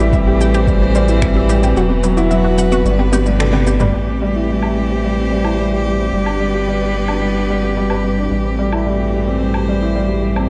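Melancholic and hypnotic, this dark piano-and-strings electronica excerpt at 110 BPM in A dorian sets a woody, intimate upright piano riff with audible action noise up front over a round, deep analog bass and smooth, vibrato-rich string quartet chords, both pumping with the sidechain, while a detuned sawtooth pluck with chorus and delay arpeggiates in the background until 3.8 seconds, an overdriven electronic kick sounds only from 0.1 to 1.3 seconds, and an overdriven deep house kit of finger snaps, shaker, toms and woodblock plays on inside a lush hall reverb.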